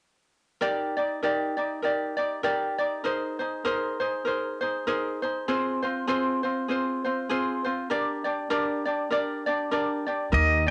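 A cassette-worn home recording in a snug room opens this languid, dreamy Hawaiian excerpt at 99 BPM with a gentle swing in Eb major, where a bright, light fingerpicked ukulele plays alone from 0.6 s through Ebmaj7, Abadd9, Fm and Gm with a touch of plate reverb and tape haze, until at 10.3 s a clean, compressed pedal steel guitar played with fingerpicks and slide sings a single high Eb in a volume swell through analog delay, and a woody, thumpy gut-string upright bass plucks a low Eb beneath it.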